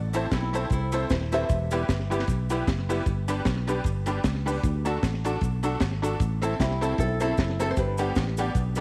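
Through vinyl crackle, light reverb and studio ambience, this driving, energetic ska excerpt in A dorian moves at 153 BPM with a swung feel, as a round, foam-muted fingered electric bass and a dry, dark reggae drum kit with a high-tuned snare, tight kick and slapback echo sit up front, joined by a clean, compressed hollow-body archtop guitar with its own slapback echo, jangly, detuned honky-tonk upright piano stabs and a grainy cabasa in the background, while a fingerpicked classical nylon-string guitar carries the melody from 0.3 to 2.1 seconds and returns at 6.6 seconds over chords moving from Am through Em, G and D.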